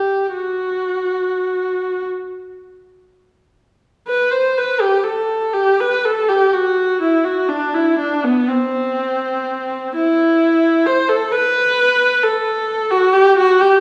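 Classical and mournful, this brief cut from a longer piece features a lone viola playing freely in a slow, yearning 6/8 with rubato, its tempo hovering around 24-45 BPM in dotted quarters. The single bowed viola sits close and up front, its tone smooth and even with vibrato, ranging from B3 to C5. A wet recital hall reverb surrounds the line, and the music shifts to a new section at 4.1 seconds that carries on to 13.8 seconds.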